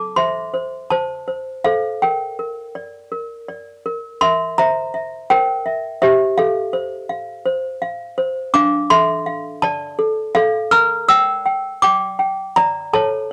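A lone toy piano carries this dreamy, tender classical lullaby, its clanky, bell-like voice sounding slightly out of tune as the plastic hammers strike. Close-miked and up front, the instrument comes across dry and full, sitting in a light studio reverb and colored by the grain of a home cassette recording. The piece moves in a lilting 6/8 at 55 BPM counted in dotted quarters, with a rubato feel that lets the time stretch and breathe. Set in F major with tuning at A4 = 437 Hz, the playing ranges from D4 up to F6 over a drifting progression that opens on Am, passes through Bb, C7/Bb, F/A and Dm, and arrives on Gm/Bb at 10.7 seconds. This 13.3-second passage is cut from a longer piece and feels like a music-box memory caught on an old tape.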